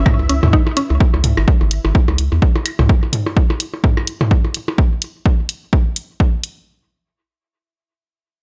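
A dry, close-sounding cut from a longer minimal techno track, clinical and sparse, running at 127 BPM in C# minor with a 58% swing on the sixteenths. A punchy analog kick and hi-hat, both overdriven and up front, drive the groove alongside layered, tape-tinged toms, claves and percussion blips, while a round, deep, wave-folded bass with sidechain pumping holds the low end until 2.9 s. A brief woody FM mallet pluck with chorus, cassette coloring and delay flickers in at 0.3 s, and a bright, bubbling sawtooth texture with random filter steps and its own reverb hovers in the background for the opening second.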